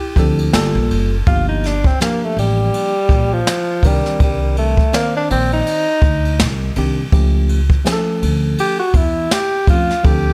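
An airy, polished studio sound frames this mellow, smoky jazz-hop fragment, with a swung groove from an up-front brushed drum kit whose dark cymbals and boomy kick sit beside a woody, pizzicato upright bass. A very quiet, ringing vibraphone with soft mallets sounds only for the opening half-second, while a worn, slightly out-of-tune tine electric piano comps underneath. The breathy tenor saxophone, carrying a slapback echo, subtone, vibrato and scooped notes, takes a solo from 1.3 seconds to the cut.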